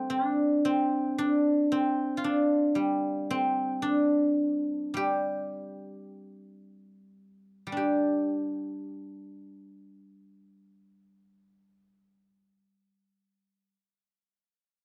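In a free, rubato 2/4 pulse drifting between 35 and 57 BPM, this pastoral, elegant fragment of a traditional Chinese piece features a solo guzheng played with fingerpicks, its silvery, ringing tone placed up front in a dry, close 1970s-style studio recording with small room ambience, easing into a slowdown from 2.8 to 7.8 seconds before moving into a new section.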